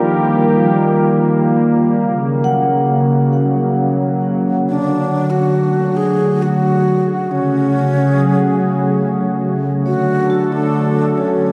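Weightless and serene, this ambient passage in 3/4 rests on an up-front analog pad of detuned, warbling sustained chords with chorus and a slow attack, while a vibraphone played with soft mallets rings out mellow arpeggios in the background through a diffuse delay. At 4.7 seconds a breathy, bright alto flute with a wooden head enters up front, carrying an unsteady, tongued melody with vibrato into the same delay. This fragment of a longer piece sits in a huge, wet reverb with an 8.9-second tail and a dark production.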